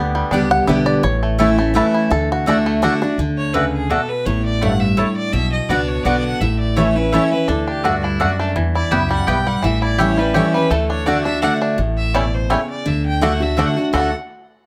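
Virtuosic and driving, this bluegrass passage in a swinging triple metre opens with a twangy, percussive five-string banjo solo played with fingerpicks, backed by a full-bodied, up-front picked jumbo guitar with audible finger squeak, a thumpy, woody pizzicato upright bass, and round, double-strung mandolin stabs. A bright, focused fiddle with light vibrato enters at 3.4 seconds, sounding distant. The banjo returns at 7.5 seconds, and both melody parts play through to the end of this cut from a longer piece, all set in a moderate studio reverb.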